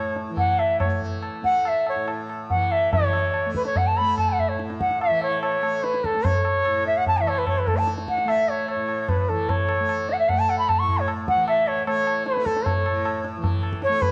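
Radiant and meditative, this Hindustani classical passage in raga Bhupali on A is cut from a longer piece and moves in a straight 4/4 at around 140 to 155 BPM, gradually speeding up throughout. An airy, reedy bamboo bansuri carries the melody up front, its bright tongued phrases colored by vibrato and reaching from A4 up to C#6, though it also carries a distant quality. Beneath it, a softly plucked acoustic tanpura holds a shimmering, buzzing drone between A2 and A3, sitting low in the balance with a warm glow. A high-tuned, ringing tabla enters at 0.2 s, close and present, and the music moves into a new section at 2.9 s. The whole performance sits in a moderate concert hall reverb and is heard through worn, warbling old cassette tape, whose pitch drift gives the sound a wavering, aged character.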